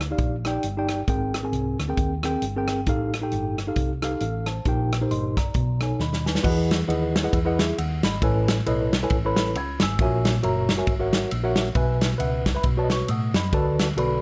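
Light studio reverb gives this short cut from a longer uptempo gospel piece a natural room sound, with the drums and electric piano placed up front. The mood is reverent yet jubilant, driven by a swung 4/4 feel. A mellow tine electric piano carries the accompaniment in rich extended chords; its worn, slightly out-of-tune tone comes through its built-in speakers. Underneath, a hollow-body short-scale electric bass, played with the fingers and amped, supplies a dark, round low end. An acoustic country drum kit with a punchy kick, medium-tuned snare, rim clicks, hi-hat, ride and crash keeps the groove, and a drum fill at 6.0 seconds leads into a new section at 6.4 seconds that restates the chord sequence in a fresh key.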